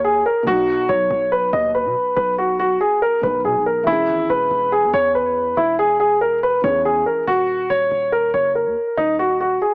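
Through a lightly reverberant, small-speaker cassette sound, this cold, tense drill piece at 141 BPM in half-time and Eb phrygian sets a dark, worn, long-sustaining baby grand piano melody up front, low-pass filtered, over a punchy, heavy 808-style bass with a fast attack and a noise layer, while a soft, intimate felt-muted upright piano, filtered and tape-colored with audible action noise, sits in the background until 7.3 seconds, when the harmony lands on Ebm7 for a brief closing section.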